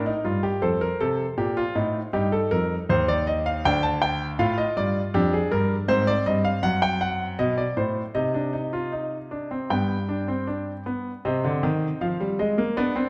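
A warm concert grand piano carries this serious, contemplative baroque-style fugue in three parts, sounding alone from 0.0 to 13.1 s across a range from D2 to A5. Its tone is smooth and vintage, with a deep bass, and it sits up front in a moderate concert hall reverb. The tempo is a steady 79 BPM in a straight 4/4. Harmony moves from Gm through F, Eb and Dm before settling in C minor from 5.1 s, passing through Dm7b5/F, F#dim7, Cm and G. A new section begins at 11.2 s on a return to Cm, and the passage is cut from a longer piece.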